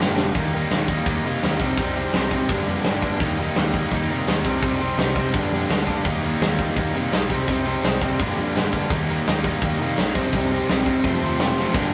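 A drum fill kicks off this short, aggressive punk rock excerpt as two distorted, picked electric guitars crash in together on a driving riff at 168 BPM in a straight 4/4. One guitar sits up front, bright and biting, while the second stays in the background, and together they cycle through Eb, Cm and Gm before landing on F near the end. Underneath, an overdriven picked bass adds a growly, punchy low end that keeps its warmth. The big acoustic drum kit sounds roomy and mid-forward, with a tight kick, a medium-tuned snare, hi-hat and crash cymbal, and another fill arrives at 11.6 seconds. A moderate reverb and a rough rehearsal-room sound give the whole thing a raw, unpolished energy.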